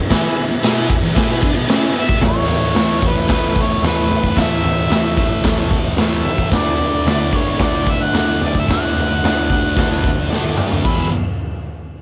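A thick, double-tracked fuzz guitar opens this swaggering, raw garage rock excerpt at 112 BPM, its riff quickly joined by a punchy, saturated drum kit in a pumping stone room and a buzzy, overdriven combo organ holding sustained chords in the background. At 2.0 seconds a clear harmonica with light vibrato enters on a pop-style solo melody, carrying over chords that move from E through A and D before a drum fill at 10.3 seconds returns to E. The home cassette recording is dry, with the gritty drums up front and their top rolled off.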